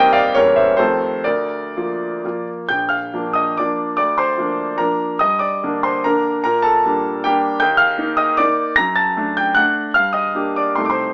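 Dotted rhythms in 3/4 drive this romantic classical dance, its rubato tempo drifting between 115 and 166 BPM with a capricious, nostalgic mood. A brilliant, up-front concert grand plays solo from start to finish, spanning a deep bass to bright high notes as harmony settles in B-flat major before turning to G minor at 7.6 s. The fragment, cut from a longer piece, sits in a moderate studio reverb, filtered through an AM-radio sound.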